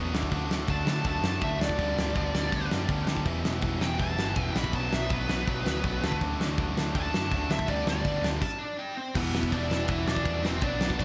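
A bright, high-gain lead guitar solo with digital delay cuts through this raw, urgent punk rock excerpt at 163 BPM in E minor, entering at 0.7 seconds and carrying through a stop at 8.4 seconds before a new section arrives at 9.2. Beneath it, a biting overdriven guitar, a hollow-bodied semi-hollow guitar and a scooped, double-tracked distorted guitar play riffs over D, G/D, Em and Bm, with the latter two set in the background. A growly, punchy overdriven bass and an up-front, big-room acoustic drum kit with a fat snare, tight kick and rolled-off top drive the straight 4/4 in a dry mix.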